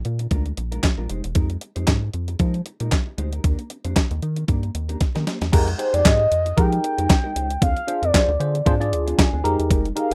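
An overdriven, thumpy 8-bit drum machine drives this late-night, danceable early-eighties boogie funk at 115 BPM in F dorian, joined from the start by a rubbery, nasal square-wave bass and, a moment later, a dark, compressed electric guitar riff under lush chorus; a worn, slightly out-of-tune tine electric piano with phaser and plate reverb enters at 5.5 seconds, and a round, warbling horn-like synth lead carries the melody from 5.8 seconds, all in a rough home-demo mix with light reverb.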